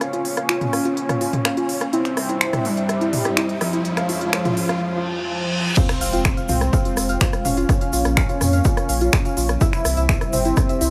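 Hypnotic and dark, this melodic techno excerpt at 125 BPM in F harmonic minor opens with a build-up over Bbm, C and Db, where a fat, detuned sawtooth lead carries the melody over a moody background pad under a filter sweep, a soft pluck spinning arpeggios through digital delay, and a deep house kit of finger snaps, rim clicks, smooth hats, toms and crash, while a riser and reverse cymbal climb in the background. At 5.8 seconds the drop lands with an impact and sub drop as a punchy, tape-warm kick and a grainy egg shaker arrive, with a round analog bass following at 6.0 seconds, the bass, lead, pad and pluck all pumping to the sidechain over chords moving from Fm to Bbm and C. Light reverb and small-room ambience on the drums keep the kit close.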